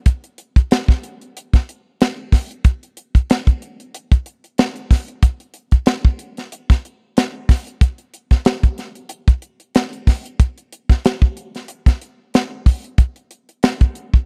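Jazz with a slick, bright mood, carried entirely by a tight funk drum kit of hi-hat, kick and snare, swinging lightly on the sixteenths in 4/4. The acoustic kit sits dry and up front, with a high-tuned snare and a tight kick in a close, 1970s-style studio sound with little reverb. Drawn from a longer piece, it shifts into a new section at 13.0 seconds before cutting off at 14.3 seconds.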